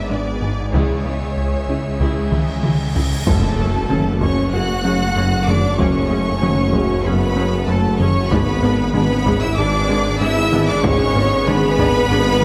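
A lush, reverberant scoring-stage sound carries this relentless, futuristic hybrid orchestral and electronic film cue, where rich vibrato chamber violins sing the melody over a distant symphonic violin line, smooth violas and cellos, focused double basses, a faint organ-like pad, a tine-like FM synth pluck playing arpeggios, a swirling phased saw bass, a rubbery square-bass riff and heavy-stick taiko drums, until a drum fill and a huge cymbal swell lead to an impact at 3.3 seconds, where mellow French horns and trombones enter with sustained chords over a mellow tuba bass line.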